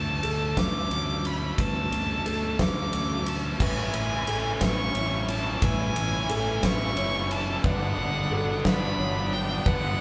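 A rich, focused solo violin soars over this euphoric post-rock build-up, its bowed melody sitting up front with a singing vibrato high in its range. Beneath it, a huge arena drum kit sits up front with a punchy kick, a fat snare and bright cymbals, the room pumping around the crash and ride. A bright, overdriven electric guitar picks out a riff in the middle register. A quiet, compressed clean guitar and a soft, felt-muted upright piano weave arpeggios underneath, the piano mellow and intimate, with its action noise audible. A round, dark fingered bass anchors the low end. At 3.6 seconds a second distorted guitar riff joins lower in the background, as the harmony moves through lush major-seventh chords and the whole band rings out together in a large studio space, like a short slice of a longer piece.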